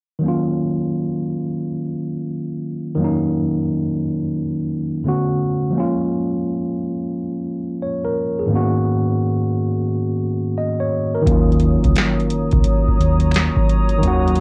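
A worn, slightly out-of-tune tine electric piano sits up front in this reflective, nostalgic lo-fi hip hop excerpt, playing low-pass-filtered accompaniment on its own at first over changes that move from Ebm7 through Bm7 and Bbm7 to Abm11. The tempo is 87 BPM in 4/4 with a swung sixteenth-note feel, in Eb minor. At 11.3 seconds, as the harmony returns to Ebm7, a booming analog drum machine arrives with a deep kick, crisp snare and metallic hats roughened by 12-bit sampler grit. At the same moment a round, foam-muted fingered electric bass and a hollow, flute-like pad softened by chorus and filtering enter alongside it. Very quiet, close finger snaps appear at 12.0 seconds. Moderate reverb and the warble of old cassette tape, with its drifting pitch, give the recording an aged, nostalgic haze.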